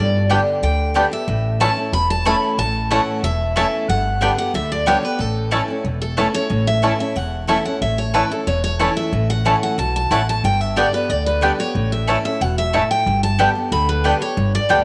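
Bluegrass at a lively, driving 183 BPM in A mixolydian, this excerpt alternates between G and A chords as a full-bodied, up-front picked steel-string acoustic guitar carries the melody with audible finger squeak, while a second picked acoustic guitar plays accompaniment, a woody pizzicato upright bass anchors the low end up front, and from 0.3 s a twangy, percussive fingerpicked banjo adds a background melody and a double-strung mandolin punches out warm stabs, all in light studio reverb.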